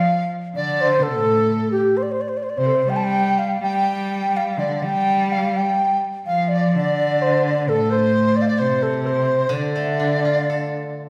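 Heard from further back in a reverberant recital hall, this short excerpt of Chinese traditional chamber music moves at a loose, rubato 64 BPM in 2/4, with uneven beats, in the D yu mode. A mellow, airy xiao carries the melody throughout, its straight tone and crisp attack sitting up front. Beneath it, a large dizi plays a second line with vibrato and the buzz of its membrane. A single bowed cello adds a rich, nasal lower line, also placed up front. At 9.5 seconds a steel-string zither enters as accompaniment, its fingerpicked notes ringing and silvery through the closing moments, and the whole passage feels tender and wistful.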